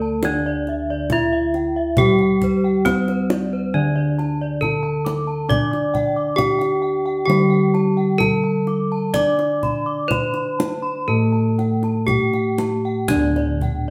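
A straight 4/4 pulse moves slowly at 58-68 BPM in this serene, ceremonial piece of Javanese gamelan in D slendro, cut from a longer work. Bronze metallophones carry the music: the melody, struck with horn mallets, rings brilliant and up front, while a lower accompaniment part played with wooden mallets sounds close, dry and full. Above them a quieter arpeggio line, also horn-mallet struck, shimmers with the beating of its paired tuning and has an airy quality. Bossed gongs supply the bass with a round, metallic tone that sits mid-forward, and the kendang enters at 0.2 s with tight, hard-handed strokes heard close and dry. The ensemble plays live together in one room, with a wet large-studio reverb around the sound.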